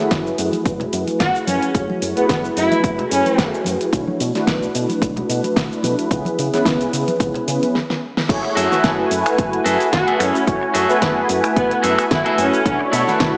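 Round, brassy synth chords open this sensual, groovy nu-disco cut with chorus, a sweeping filter and a pumping pulse, soon joined by a punchy layered kick, a pop kit with a fat snare and metallic hats, soft background congas and a warm, envelope-filtered fingered bass, while a dark, woody violin section sings lush bowed phrases from 1.2 seconds. A drum fill and a band stop lead into the drop at 8.3 seconds, where a bright, twangy clean electric guitar picks a riff through its own chorus and ambient delay and the violins return. The whole mix is dreamy and soaked in hall reverb, with a small-speaker character, its swung sixteenths moving through rich minor ninth, eleventh and seventh chords.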